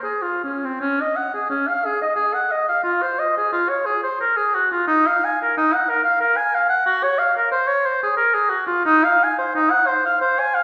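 This is a classical, baroque-style fantasia for unaccompanied oboe, a serene and radiant fragment of a longer piece that flows in a free, rubato three-beat pulse. The solo oboe sits up front, its warm tone shaped by light vibrato, soft attacks and a smooth top as it moves between C4 and Ab5 for the full 10.6 seconds. A wet recital-hall reverb with a lingering 1.9-second decay surrounds the line, giving the impression of hearing it from further back in the room.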